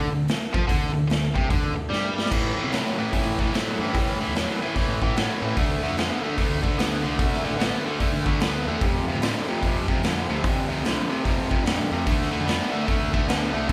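Riding a swung eighth-note groove at 148 BPM in 4/4, this brooding, smoky slice of blues rock with a southern rock edge sits in A minor and is cut from a longer piece. A cranked, overdriven stack guitar, double-tracked and picked, carries the riff up front from the first moment, alongside a growling fingered electric bass that adds its own overdrive from further back in the mix. The raw garage drum kit comes in at 0.3 seconds with a punchy kick, a medium-tuned snare, hi-hat and crash, its saturated, gritty sound pumping in a bright stone room with a rolled-off top. A drum fill at 1.9 seconds ushers the band out of an opening Csus2 and onto A5 at 2.3 seconds, where the riff moves through D5 and F5 before returning to D5. Light reverb and the feel of a trio playing live in one room give the whole passage a loose, unpolished immediacy.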